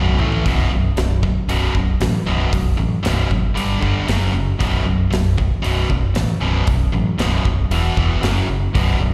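A short drum fill opens this menacing, heavy hard rock excerpt at 116 BPM in B minor, as a bright, distorted guitar and a hollow-body guitar with a warm overdriven tone play a riff together, both with slapback echo. Up front, a growling, overdriven fingered electric bass drives the low end, while a big acoustic kit with a boomy kick and medium-tuned snare works through hi-hat, snare and toms over B5, G5, F#5 and E5 power chords. It sounds like a live gig heard through the venue's PA, with a touch of hall reverb.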